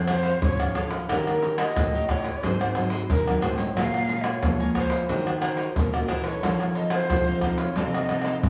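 Samba and choro at 90 BPM with a yearning, nostalgic mood: a breathy, close-miked shakuhachi carries the melody with vibrato and tongued, expressive phrasing over chords moving from Dbmaj7/F through Eb7, Ab7, Bbm7 and Ebm7 to F7. Two fingerpicked classical nylon-string guitars, one full-bodied on accompaniment and one in the background on bass, show audible finger squeak, while a mellow, crisp picked cavaquinho sits further back. Up-front, vintage, band-limited maracas, pandeiro, tamborim and tight surdo drive the groove and end with a drum fill at 8.1 seconds, all heard as a live band in one room with a wet, large studio reverb, in this short section cut from a longer piece.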